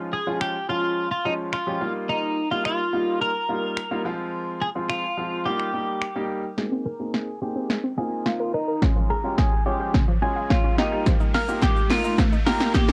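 A punchy house drum kit sits up front in this upbeat, carefree dance-pop excerpt at 107 BPM in Ab major, its finger snaps, hi-hat, kick, shaker and snare carrying a tape-softened glow, while a clean, compressed twelve-string electric guitar picks the melody over a clear, polished baby grand piano that pumps beneath it. From 6.6 seconds a build-up brings a drum fill, a filter sweep and a round, detuned analog pluck playing arpeggios in the background with chorus and analog delay, moving through chords like Abadd9, Db and Ebadd9. A riser enters at 9.7 seconds and a very quiet, crisp group handclap joins at 11.6 seconds, all heard in a small room with the warm character of a home cassette recording.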